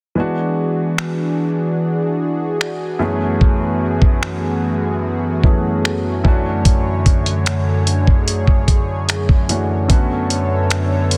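A dense, heavily limited modern mix with light reverb carries this moody, late-night contemporary R&B excerpt at 74 BPM in straight 4/4. An intimate grand piano with audible action noise accompanies a shimmering, detuned pulse-width pad with chorus and sidechain pumping that sustains chords moving from E9 through F#m11 and Dmaj7/F# to Bm9/F#. At 1.0 seconds a gritty, compressed sampler-style drum kit joins up front with finger snaps, hi-hat, a thumpy kick and a softly clipped snare.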